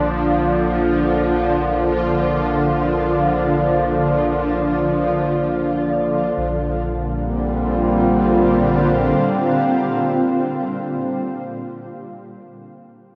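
A cassette home recording bathed in wet studio reverb, this luminous ambient excerpt in Bb major drifts in free time. An ethereal, detuned pad with chorus sits up front holding sustained chords, while a deep, round sub bass holds Bb1 until 9.1 s and a sawtooth analog drone warbles in the background. A pure, glassy glass harmonica lingers on D5 until 6.4 s, when the harmony moves from Dm/Bb to Bb69.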